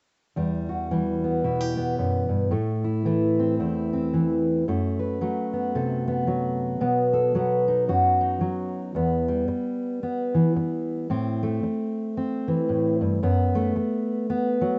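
A lone fingerpicked steel-string acoustic guitar enters at 0.4 seconds, its dark, full-bodied jumbo tone placed up front as it moves through a haunting, wistful folk progression in 4/4 with swung eighths, from Emadd9 through Am and F#dim to B. From 9.0 seconds the harmony turns back to Em and Am before settling on F#m, and the fragment breaks off at 14.8 seconds. Light reverb and an outdoor setting give the sound an open, natural air, while the top end stays soft and rounded.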